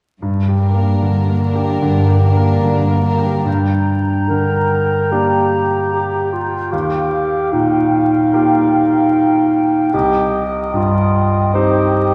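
A bright, up-front grand piano with audible action noise carries this bittersweet, longing G minor film-score excerpt at a rubato 75 BPM alongside a sul tasto cello section holding G2, soon joined by a floating violin section, then from 3.5 s by a hollow flute ensemble, an up-front solo clarinet and a distant oboe over Gm, Ebadd9 and Cm, all set in a wet scoring-stage reverb heard from further back with vinyl crackle.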